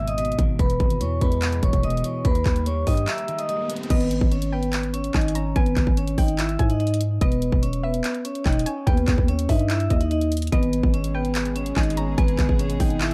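A half-time trap beat at 145 BPM drives this dark, melancholic hip hop piece in G# harmonic minor, with a hard-clipped kick, handclaps, bright hi-hats and crash cymbal sitting up front over a growling, buzzy 808-style bass. A ringing vibraphone carries the melody through tape echo, backed at first by a slightly broken-up, picked electric guitar until a brief break with a background riser at 3.1 seconds gives way at 3.9 seconds to a warbling, lo-fi pluck with chorus and tape echo as a second line. Intimate bowed chamber strings add sustained chords from 10.5 seconds, and the production stays dry with little reverb.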